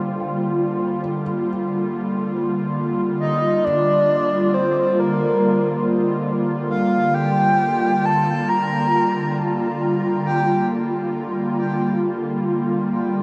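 A melancholic, spacious ambient piece in free time and G minor opens on a Gm7 chord: an airy, detuned pad holds sustained chords up front with chorus, while a felt-muted upright piano sits in the background playing soft arpeggios through delay, its action noise audible, until it stops at 3.6 seconds. From 3.2 seconds a breathy, flute-like synth lead carries the melody up front with vibrato, a sub octave, subtle chorus and delay, ending at 10.7 seconds as the pad sustains on. A huge, wet reverb and a cassette-tape character color this fragment, cut from a longer piece.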